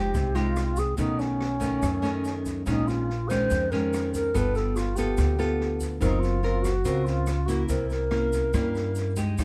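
Bossa nova in a wistful, melancholic mood, this short cut from a longer piece sets a pure, distant alto flute with vibrato and a soft attack over a fingerpicked classical nylon-string guitar and a woody pizzicato upright bass, both placed up front. From 0.1 seconds an acoustic jazz kit in a natural studio room adds a boomy kick, rim clicks and a high-tuned snare, while a grainy, bright tube shaker sits in the background. Light reverb softens the whole, as the harmony drifts through lush extended chords from Fm9 to a closing C7b9.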